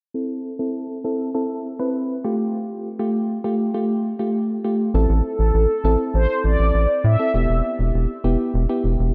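A dark, softly reverberant production frames this nocturnal, cool synth-pop excerpt, opening on a mellow FM electric piano whose warbling, vintage tone carries a filter sweep through its first 4.9 seconds over Am and Fadd9 chords. At 4.9 seconds a round analog bass enters deep and up front, joined by a brassy, detuned synth brass melody with chorus, vibrato and digital delay that sings over Am and Em until 8.2 seconds. The piano keeps its soft, chorused accompaniment beneath both to the close at 9.1 seconds.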